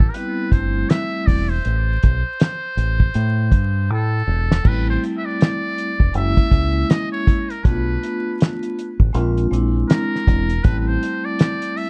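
A dark, lightly reverberant mix dusted with vinyl crackle frames a smoky, nocturnal jazz-hop groove at 80 BPM in A minor, swung on the sixteenths and cut from a longer piece. Cloth-damped, thuddy drums with a fat snare, tight kick and dark cymbals sit up front beside a round, deep dub fingered bass that stops at 11.0 seconds, while soft-mallet vibraphone rings with a slow motor vibrato beneath the melody. A metal-muted trumpet carries the tune in a buzzy, breathy whisper through an analog delay, and after a drum fill ending at 4.6 seconds the harmony moves from Am7 through F#7, Bm7b5 and Bb9 before returning to Am7.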